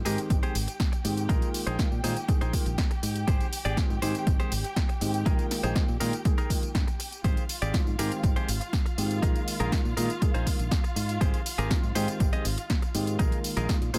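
Joyful and funky, this 14-second slice of filtered disco house moves at 121 BPM in a straight 4/4, cycling between Abmaj7 and Bb7sus4 chords. A punchy analog drum machine supplies overdriven snare, hi-hat and tambourine from 0.1 seconds, with sidechain pumping on the hats and percussion, joined from 0.3 seconds by an overdriven electronic kick that sits up front. A bright, fingered electric bass carries the low end, while a twangy, compressed clean electric guitar plays a picked riff, recorded direct. A boxy concert grand piano with deep bass and long sustain adds accompaniment colored by phaser and vintage 12-bit sampler grit, and a dark, lush violin section holds sustained chords with vibrato and portamento beneath its smooth top. The bass, piano, guitar and strings all breathe with sidechain pumping through a low-pass filter, and a digital ambience surrounds the whole mix.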